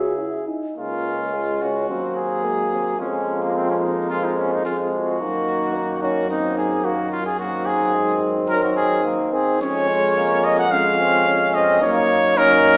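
A rubato 4/4 pulse around 109 BPM carries this stately classical brass quintet excerpt in Db major, cut from a longer piece. The mellow trumpet leads the melody up front, close-miked with a light vibrato, while the flugelhorn sits in the background with a smooth top on a second line. The French horn sounds distant and roomy with light vibrato, and the trombone adds a clear, punchy accompaniment from the background, also with light vibrato. Underneath, the tuba holds the bass with a soft attack and vibrato, and all five parts play together from 0.0 to 12.8 seconds. The harmony moves from C#m onto Db and through colors such as a rootless Gbmaj13/F and Ab7/Gb before settling on Ebm7/Gb, heard from further back in a wet stone room with a small-speaker character.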